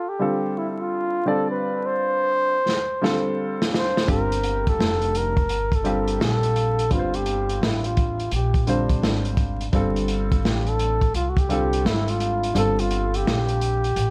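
A bucket-muted trumpet opens this nocturnal, cool jazz-hop cut, its dark, veiled, breathy tone whispered and intimate, with soft attacks and scooped notes trailed by tape echo, as a worn, slightly detuned upright piano joins with woody chords over Dm7. At 2.7 seconds a crunchy breakbeat kit arrives with a drum fill, sitting up front with a tight kick, medium-tuned snare and hi-hat, its gritty, saturated sound rolled off at the top. At 4.1 seconds the harmony moves to Gm11 and a pizzicato upright bass enters low in the register with a woody, warm acoustic tone. The groove sits at 85 BPM in 4/4 in G minor, swung on the sixteenths, and the kick drops out from 12.6 seconds while trumpet, piano, bass and the rest of the kit carry on. Light reverb, vinyl crackle and a dark, warm production frame this short section cut from a longer piece.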